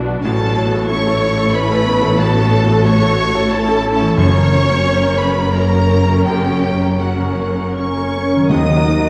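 Bright, open piano, a dark viola section, a very quiet ringing harp and bowed cello and double bass sections begin this sorrowful, moving film-score excerpt in a rubato 3/4 at 76-93 BPM, with a rich, focused violin section taking the melody from 0.2 seconds over a lush second violin line. Timpani with medium mallets sound in the background from 4.2 seconds as the harmony moves from A to F#, and at 7.8 seconds an airy flute section, a smooth solo clarinet and a dark French horn section join before the cut on Ebm. A wet recital hall reverb and worn, warbling cassette tape with pitch drift colour the whole orchestra.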